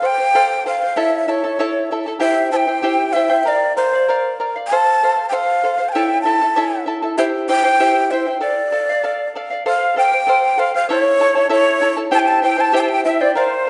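Andean folk at 97 BPM in an earthy, wistful 2/4, where a large wooden quena with a breathy, close-miked tone and vibrato, a little unsteady, carries the melody up front over a shimmering, fingerpicked charango with double strings, until a crisp, bright cane quena with audible chiff adds an expressive second line at 9.7 s, all bathed in a recital-hall reverb in this short cut from a longer piece.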